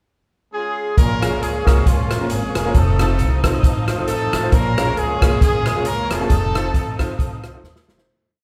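Recorded with the band playing live in one room, under a moderate, large-studio reverb, this short uptempo gospel piece swings with a soulful, fervent drive. A bright, forceful trumpet with scooped notes and a mellow, distant horn section state call-phrase melodies from 0.5 s. At 1.0 s they are joined by clear off-beat grand piano chords, a soft, flute-like tonewheel organ pad on a fast rotary speaker, very quiet lush bowed strings, and a woody pizzicato upright bass walking with slides and chromatic approach notes. The up-front big-band drum kit, with its punchy kick, drives a two-beat praise groove on hi-hat, kick, rim click and snare, ending with a fill at 7.6 s as the piece fades out.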